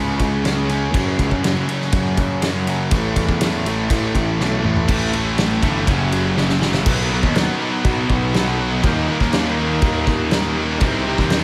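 An angsty, brooding quiet-loud alternative rock excerpt at 122 BPM in 4/4 opens with a crunchy overdriven guitar and a thick fuzz guitar riffing in the background over a growly, fuzz-toned picked electric bass. At 0.2 seconds a loose, roomy indie drum kit joins, with dark cymbals and a tight kick sitting up front, and drum fills lead into each new section. A double-tracked, high-gain guitar adds a heavy layer from 4.9 seconds, all under light reverb as the chords move from C#5 through F#5 and A5 to B, D# and Cm.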